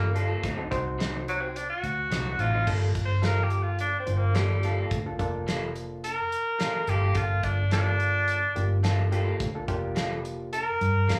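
Heard dry through a club PA, this smoky, brooding straight-eighth soul blues in G minor at 107 BPM puts a clear, punchy tenor saxophone solo up front with light vibrato and slapback echo, over a gritty, barky overdriven reed electric piano, twangy stabs from an electric guitar through a small old amp, a dark, foam-muted fingered electric bass, and a soul drum kit with a fat snare and tight kick that enters at 0.2 s, as the chords move from D7b9 to Gm9.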